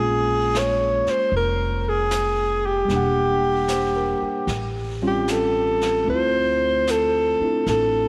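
Swung eighths in 4/4 carry this late-night, romantic jazz ballad excerpt, where a breathy, up-front alto saxophone sings the melody with subtone, light vibrato and scooped notes over a worn, slightly out-of-tune electric piano heard through its built-in speakers, a woody, thumpy pizzicato upright bass, and a natural-sounding brush kit on snare and hi-hat that enters at 0.5 s, all moving through Bbm7, Em7b5, A7alt and Dm9 in a moderate echo-chamber reverb.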